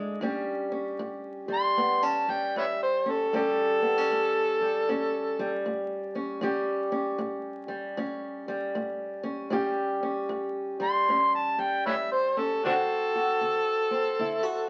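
A swung 4/4 groove carries this laid-back, rollicking blues fragment, where a dark, woody, boxy old ladder-braced acoustic guitar on aged strings fingerpicks the accompaniment up front over an A7 vamp that moves to D7 at 12.6 seconds, while an amplified, overdriven, gritty harmonica solos in a jazz style with light vibrato, tongue slaps and scooped notes, entering at 1.5 seconds and returning at 10.8 seconds, all bathed in wet studio reverb and the crackle of a very old 78 rpm record.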